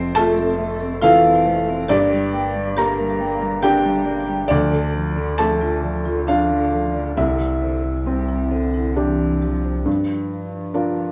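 Melancholic and reflective, this short fragment of neoclassical piano and strings moves in a slow, rubato 3/4 at 68 BPM. A felt-muted upright piano sits up front as the accompaniment, its soft, mellow tone intimate and natural, spanning C2 to Bb5 with the faded character of cassette tape. Alongside it, a single bowed cello carries a second line between C3 and C4, warm with vibrato, soft attacks and expressive portamento, also coloured by tape. A deep, sustained sub bass doubled at the octave anchors the low end from F1 to D2 until 9.9 seconds, while a woody, dark marimba played with medium hard mallets adds percussive arpeggios in the background from 0.2 to 9.8 seconds, touched by tape echo. The harmony drifts through Fmaj7, Gm, Dm and Cadd9 before turning to Gm7 at 9.9 seconds as a new section begins, all held in a moderate studio reverb on a home cassette recording.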